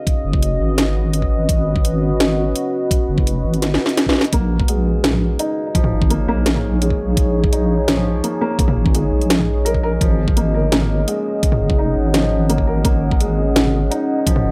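A deep, detuned sawtooth pad with chorus and sidechain pumping opens this spacious, heavy half-time drum and bass excerpt, joined almost at once by a knocking, tape-warm electronic kick, an overdriven kit of cracking snare, bright hats and toms that plays a fill at 3.6 seconds, and a dark, wobbling bass with chorus, before a soft, felt-muted upright piano enters at 4.3 seconds with intimate arpeggios trailed by delay, the whole sitting in a light digital ambience.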